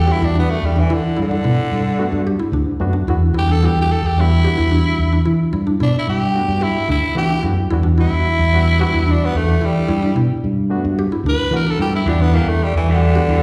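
A straight 4/4 afrobeat groove with a defiant, funky mood, cut from a longer piece, carried by an up-front, round fingered electric bass under a raspy, gritty tenor saxophone solo with vibrato and a slapback echo. A barky, reedy electric piano with light overdrive and fast tremolo comps over the alternating Em7 and Gmaj7 chords, while a woody, mallet-like synth pluck with chorus spins mellow arpeggios, and a twangy, slightly broken-up electric guitar adds background stabs from 12.1 seconds. The sound is dry, like a live gig heard through the venue's PA.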